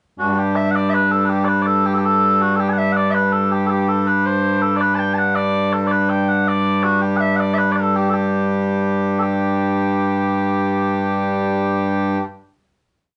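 Mellow, sweet small bagpipes play alone from 0.2 seconds, carrying a rollicking, lively Celtic folk jig in G major at 108 BPM in 6/8 with a continuous, motif-based melody built from sentence-like phrases, sitting up front yet heard from further back in a reverberant studio with softened highs, before settling on a long final note from 9.2 to 11.4 seconds.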